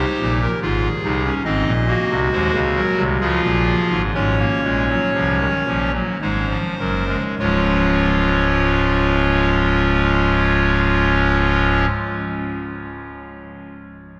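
Classical baroque-style four-part fugue excerpt in Db major and 3/4, stately yet lively, played on pipe organ with a hollow clarinet reed stop sounding up front with baroque voicing and chiff from 0.0 to 11.9 seconds, ranging from Db1 to Eb5 at a tempo between 48 and 72 BPM that slows from 0.2 to 7.4 seconds, moving through Eb, Ab and Ab7 to Db before a new section settles on Db at 7.4 seconds, all bathed in a cathedral reverb with a seven-second decay.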